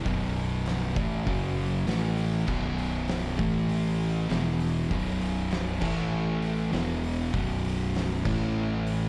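Ominous and brooding, this short stoner and doom metal passage is cut from a longer piece and moves in a straight 4/4. A crunchy overdriven guitar, double-tracked and picked, plays alongside two thick fuzz guitars, one dark and one warm, all sitting in the background as they grind through the riff across the full 9.1 seconds. Beneath them a fretless electric bass with overdrive carries the low end, its tone bright, direct and amped. An oversized low-tuned acoustic drum kit enters at 0.1 seconds, with a punchy kick, fat snare, hi-hat and dark crash cymbals, its sound saturated and gritty in a bright stone room. The riff cycles through power chords on B5, A5, E5 and F#5, and the whole is set in a dark, warm production with light reverb and studio ambience.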